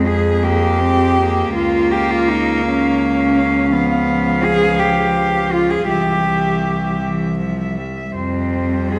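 A wet concert-hall reverb with a dark, softened top end surrounds this elegiac, melancholic classical excerpt for four bowed cellos, moving in a slow, rubato 6/8 at 54 BPM. A pure, floating melody cello sounds distant and high, while an intimate second line, up front with an airy bow, and a close accompaniment cello with light vibrato fill the middle. A rich bass cello sits forward beneath them, all four playing sul tasto with soft attacks throughout. The harmony moves from F minor through B-flat minor and C before settling on an open F chord at 8.2 seconds.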